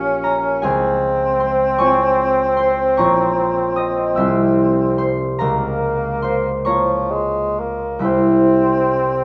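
A bassoon and concert harp begin together in this elegiac, solemn romantic duo, a 9.2-second passage cut from a longer piece. It moves in a slow, rubato 6/8 at roughly 43-52 BPM in dotted quarters over Bb minor harmony that drifts through Dbmaj7 toward C. The bassoon carries the melody with a warm, vibrato-laden tone that sounds distant yet roomy, while the mellow, fingerpicked harp rings out beneath it, all bathed in the reverberant resonance of a church or concert hall.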